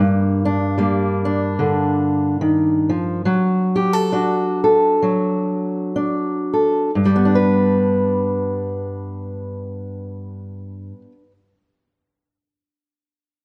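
A dark, up-front steel-string acoustic guitar sits in light reverb in this short folk passage cut from a longer piece, a solo fingerstyle performance with a reflective, wistful mood. The fingerpicked guitar plays alone from 0.0 to 11.3 seconds, ranging from G2 up to B4, in 4/4 at a slow tempo between 59 and 76 BPM with a gentle swing on the eighth notes. The opening section moves from G minor to D over F-sharp and slows down through its first 6.9 seconds. At 6.9 seconds a new section arrives on G major, its brighter colour lifting the melancholy of what came before. The instrument is tuned slightly below standard pitch, with A at 438 Hz, and it carries an intimate, concert-hall character.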